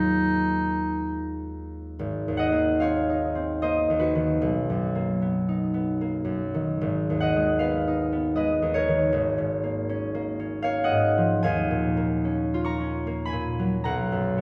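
A ringing, fingerpicked concert harp carries this wistful, hazy impressionist duo in a rubato 3/4, spanning low to high across colourful chords such as Abadd9, Bmaj7 and Ebm9. A bright clarinet sings a brief solo melody at the very start and falls silent by 1.6 s, leaving the harp alone for the rest of this excerpt. Both instruments sit up front within a wet recital hall, heard from further back in the room, and the harp closes on a floating Bmaj7#11 at 13.9 s.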